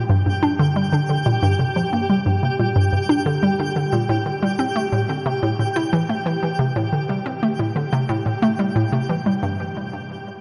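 A hollow, bouncy square-wave pluck sits up front, detuned and edged with a noise layer, its fast attack and short decay carrying a riff through chorus and delay from 0.0 to 9.7 seconds. Behind it, a twinkling granular texture adds sparkling octave-up FM shimmer, with a slow attack and long release bathed in its own reverb, while the harmony moves from G5 to a new chord at 4.1 seconds. This cut from a longer piece of ambient, sequencer-driven space music moves at a straight 90 BPM in 4/4, its mysterious, cosmic mood deepened by a huge, wet reverb with a 7.9-second tail.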